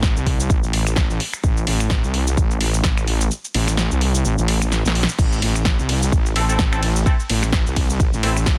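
A heavy, saturated wobble bass and a punchy electronic kick open this gritty, bouncy bass house excerpt at 128 BPM in A phrygian, with a 16th-note swing feel over a steady Am. The sawtooth-and-sine bass sits low and up front, detuned and compressed, carrying chorus and overdrive and pumping against the kick through sidechain. A layered house drum kit fills out the groove with a punchy snare, bright hi-hats, ride, crash, finger snaps and shaker. The kick drops out from 3.3 to 5.2 seconds, and a drum fill leads into its return. At 6.4 seconds a nasal, band-passed chord stab enters, its detuned sawtooth tone evolving under lush chorus and delay with short, bright hits that also pump with the sidechain. The sound is dry and dense, with a heavily limited modern master that keeps the track tight and forceful.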